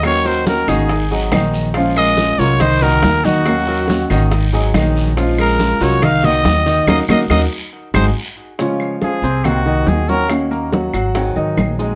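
A raspy, growling trumpet leads this danceable, sultry excerpt of Cuban son and guajira up front, breaking into a solo at 8.6 seconds before dropping out at 10.3, over dark fingerpicked flamenco guitar, clear grand piano arpeggios with long sustain, a thumpy gut-string upright bass, and background percussion of damped congas, tight high-tuned bongos, woody claves, a distant guiro and grainy maracas, set in a moderate studio reverb.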